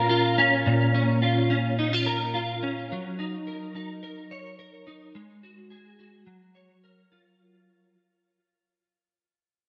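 A lone clean electric guitar opens this short dream pop fragment, picked and compressed, sitting up front in the mix with a warm, clean tone. An ensemble chorus and a delay shimmer around its notes, which span from the low A#2 up to C#5. A moderate plate reverb with a long tail adds a hazy, floating sense of space to the dreamy, blissful mood. The harmony drifts from A#m to F#6 at 2.9 seconds, then through F#sus2/G# before settling on F#maj7. The whole passage is cut from a longer piece and fades out from the start, with the guitar ringing until 7.9 seconds.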